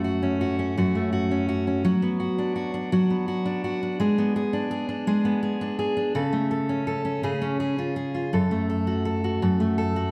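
A fingerpicked steel-string dreadnought acoustic guitar plays alone and up front, its full-bodied tone set in a wet recital hall reverb with a 1.6-second decay. This aching, dramatic pop fragment, cut from a longer piece, moves at a slow 56 BPM in 6/8 in F# harmonic minor, stepping through F#m, Bm/F#, G#dim, A/C# and C# before returning to F#m at 8.3 seconds.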